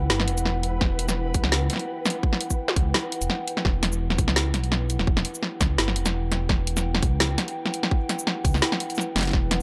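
Half-time drum and bass with a dark, cinematic mood, this excerpt rides a swung half-time pulse in 4/4 over an E minor add-nine chord. A dark detuned saw bass sits up front from the opening, deep and rumbling, its beating tones thickened by tube saturation. Above it, a moody analog pad holds sustained chords with slow attacks and long releases, coloured by chorus and pumping against the sidechain. A flickering, grainy texture glimmers in the background with its own reverb until 3.7 seconds, when it falls away. The drum kit arrives at 0.1 seconds with a woody snare, bright hats and shaker, joined at 0.8 seconds by a tight electronic kick, both layered, up front and carrying the character of a small room. The whole mix is echo-heavy, set in light digital ambience.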